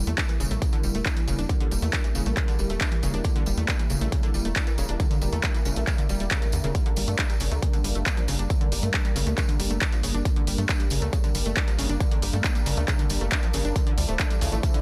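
A driving, emotional uplifting trance passage at 137 BPM opens with a thick, airy detuned sawtooth pad that pumps under chorus, phaser and a filter sweep, a bright unison pluck spinning arpeggios through cassette-tape grit and dub echo, and a tight, saturated wave-folded sequencer bass. A tape-warm analog drum machine with handclaps and hi-hat and a jingly tambourine tucked close and dry in the background join at 0.1 seconds, followed by an up-front layered electronic kick at 0.2 seconds, all held fairly dry as the chords move from Edim to Gm to Dmadd9.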